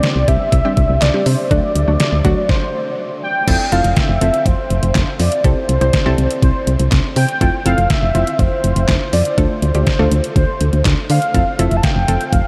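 Soaked in a huge ambient reverb, this dreamy, upbeat and nostalgic synth-pop excerpt sets a velvety, detuned synth lead carrying the melody with chorus, vibrato and tape echo over a round analog pluck with a filter sweep, a punchy, dark FM bass entering at 0.2 s, and a thumpy, overdriven 8-bit drum machine of kick, snare, hi-hat, handclaps and crash, with a brief stop from 2.5 to 3.5 s before the chords move through Fmaj7, C6 and Dm.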